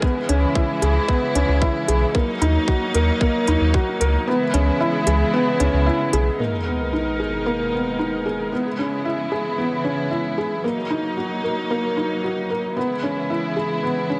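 Set in a moderate concert hall reverb, this moving, cinematic piano and strings electronica at 113 BPM in C# dorian pairs a soft, felt-muted upright piano riff with audible action noise and delay against rich, vibrato-laden string chords that pump with sidechain, while a deep, round sub bass, also pumping, and a crisp, overdriven electronic hi-hat run to about 6.3 seconds, a tight, overdriven kick stops at 3.8 seconds, and an electronic sub drop arrives at 6.4 seconds.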